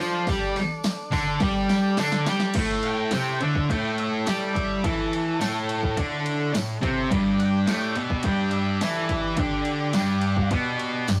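Swaggering and rowdy, this garage rock clip in A mixolydian struts at 106 BPM behind a thick, bright, double-tracked fuzz guitar riff up front, with a punchy analog drum machine entering at 0.3 s and hitting a fill from 1.4 s into the second section at 2.5 s, an octave-fuzz lead guitar melody sitting in the background from 2.8 s, a buzzy overdriven combo organ holding sustained chords with heavy vibrato, and a jingly, distant tambourine, all caught in a rough, saturated rehearsal-room sound with small-room reverb.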